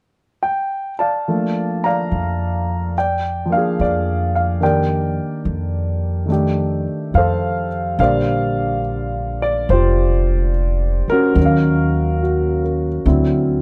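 A warm baby grand piano opens this romantic, intimate jazz ballad at 0.4 s, its long sustain and audible action noise captured up close in a dry, detailed room, moving through lush Bb major harmonies such as Bbmaj7, Ebmaj7 and F13 at a slow 71 BPM with a gentle swing in 4/4. At 2.1 s a woody, pizzicato upright bass with steel strings joins up front, anchoring the low register beneath the piano. Later the harmony darkens briefly toward Ebm9 and D9 before this fragment of a longer piece cuts off at 13.6 s.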